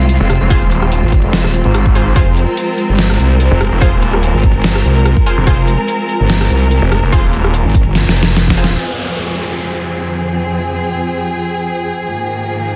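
An aggressive, chaotic heavy wobble dubstep drop in F minor at 145 BPM with a half-time feel opens on sidechain-pumped bowed strings, bright orchestra-hit-like synth stabs, a blurred granular pad in the background and an up-front detuned wobble bass, soon joined by an overdriven dubstep kit with a deep snare and metallic hats, a snarling distorted saw bass and a punchy electronic kick, until a drum fill at 8.0 seconds gives way at 8.8 seconds to a downlifter and a filter sweep on the strings, which settle on an Absus2 chord at 12.1 seconds.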